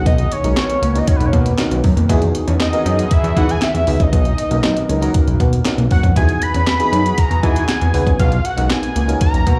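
A fat, detuned sawtooth analog lead carries the melody through phaser, plate reverb and tape echo, riding over an up-front, thick analog bass and a clean, overdriven 12-bit drum machine with a thumpy kick, medium-tuned snare and handclaps in this danceable, feel-good early-eighties boogie funk clip at 118 BPM in E lydian. A glassy, bell-like FM electric piano, a lush detuned pad and a dark, slightly broken-up electric guitar riff with lush chorus sit behind, cycling between Bmaj9 and Emaj9. A band accent lands from 4.1 to 6.2 seconds, where mellow, round synth brass briefly joins at 4.6 seconds, all heard through a club PA with light room reverb.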